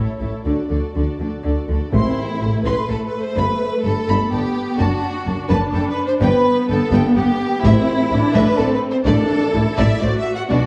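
Lush, up-front violins carry a second line beneath a smooth, lightly vibrato violin melody in this swashbuckling, determined heroic adventure film score at 126 BPM in 3/4 and A dorian, joined by expressive violas with portamento, an intense cello section in the background, rich double basses and round, soft-mallet timpani that first enter at 1.9 s, the strings blooming in a wet scoring-stage reverb.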